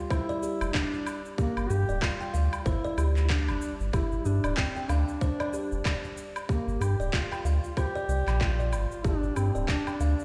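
A mellow duduk carries a folk-style melody with vibrato and scooped notes over soft, woody kalimba arpeggios, both touched with delay, while a bronze singing bowl rings with slow beating in the background of this meditative organic downtempo piece, cut from a longer work. Just after the start, an overdriven electronic kick and overdriven woodblock, shaker and handclaps set a lightly swung groove, re-recorded in a large room, and a round sine sub bass sits up front from 0.6 seconds. The whole mix is heard through a big sound system in a bare stone room, with light reverb and a softened top end.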